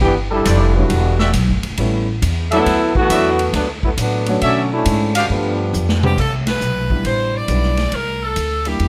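A clear, present trombone section opens this joyful, brassy big band swing passage at 137 BPM, carrying a featured line over a woody, thumpy upright bass with gut strings and a distant, roomy drum kit with a punchy kick and medium-tuned snare. A smooth-topped trumpet section soon punctuates with stabs, while a baby grand piano with a natural, short sustain comps underneath through chords such as Cmaj9, Em9, A7 and D69. A drum fill at 5.7 seconds closes the first section, and the trombones drop out at 6.0 seconds. At 6.1 seconds a bright saxophone section, tight and up front with light vibrato, takes over the melody, and a band accent follows soon after. The bass, drums, piano and saxophones carry on to the end of this cut from a longer piece, with a light reverb giving the ensemble a sense of space.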